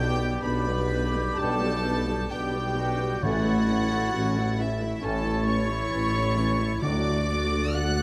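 A lyrical, warm classical passage cut from a longer piece, moving at a rubato 66 BPM in 4/4 over the chords G/B, A and D. A symphonic violin section carries the melody with a soft, floating sul tasto tone, while a chamber violin section, a clear clarinet, a warm oboe with light vibrato and a large flute ensemble with a crisp attack and lifted highs weave second lines in the background. Beneath them, a dark, woody viola section fills in the accompaniment, and a low foundation comes from the cello section, the double bass section and a distant, roomy tuba. Very quiet French horns and a tight trombone section in the background add sustained chords from 1.4 to 7.2 seconds, and soft-mallet timpani with a round calf-head sound come in at 3.2 seconds. A moderate concert hall reverb wraps the orchestra in its space.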